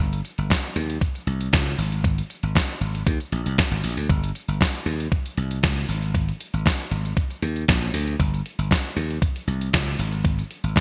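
A punchy, growly slap bass, up front and amped, drives this danceable, slick early-eighties boogie funk at 117 BPM in straight 4/4, paired with a crisp 8-bit sampler-style drum machine whose thumpy kick, fat snare and hi-hat carry a tape-warm, large-room character, all within light reverb and bright 1980s-style digital production in this 10.8-second passage cut from a longer piece.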